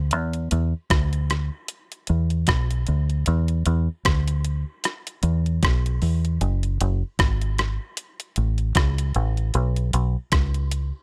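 Set in a digital ambience, this short lovers rock reggae cut from a longer piece moves at 76 BPM in 4/4, with a swung sixteenth-note feel and a smooth, longing mood. Up front, a deep dub fingered electric bass sounds dark, round and punchy, its foam-muted tone coming through direct and amped in the low register. A detuned 8-bit digital drum machine, also forward in the mix and overdriven with a sampler-style edge, joins at 0.1 seconds with hi-hat, rim click and a thumpy kick.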